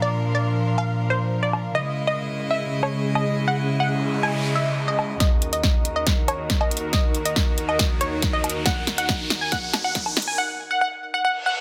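A half-time 4/4 pulse at 139 BPM drives this chaotic, menacing heavy wobble dubstep fragment in Eb phrygian, tuned to A4 = 438 Hz, where a gritty, detuned sawtooth unison pluck with digital delay carries the melody over bright, earthy bowed chamber strings pumping with sidechain and a mellow, ethereal pad in the background, while a big-room dance kit of punchy snare, metallic hats and woodblock enters at 0.8 s, a punchy electronic kick joins at 5.2 s as the build-up begins with a riser, drum fill and filter sweep on the strings, and electronic noise sweeps lead to a reverse cymbal at 11.3 s.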